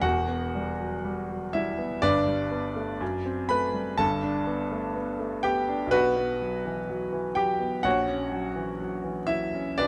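A passionate, stormy romantic character piece for solo piano, cut from a longer work, moves in a rubato 2/4 at 62 BPM as a clear, intimate grand piano spanning E1 to B5 sits up front with audible action noise, carried by close, detailed microphones into a moderate scoring-stage reverb while the harmony travels from Em through G and D7/F# to B5 and F#7/A# over 9.9 seconds.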